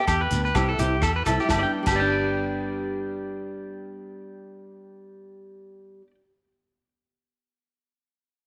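A plunky, fingerpicked open-back banjo opens this warm, carefree highlife guitar band excerpt with a brief solo, playing until 1.1 seconds. Alongside it, an up-front electric guitar at the edge of break-up spins twangy arpeggios through tape echo, carrying on to 6.1 seconds. A round, foam-muted fingered electric bass holds the low end, while a small, fingerpicked nylon-string guitar adds accompaniment from 0.3 seconds. Early on, a distant, roomy soul drum kit with dark cymbals and a tight kick plays briefly, along with ringing, saturated agogo bells and a grainy shekere in the background. Set at 126 BPM in G major with a lilting 16th-note swing, the band moves from Em and C to G inside a moderate echo chamber reverb.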